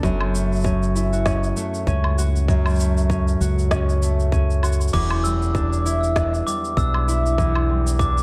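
Folktronica at 98 BPM in 4/4 with a light sixteenth-note swing, this delicate, autumnal excerpt from a longer piece moves from F#m7 to Em7 in a dark, softly reverberant production. Up front, a ringing, fingerpicked concert harp plays arpeggios through a digital delay over a round, punchy fingered electric bass, while a tight electronic kick and an organic electronic kit (woody snare, shaker, woodblock and crash) carry a tape-warm sound re-recorded in a large room. At 4.9 seconds, a bell-like glockenspiel struck with soft plastic mallets enters with a smooth second line, colored by 12-bit sampler grit and tape echo.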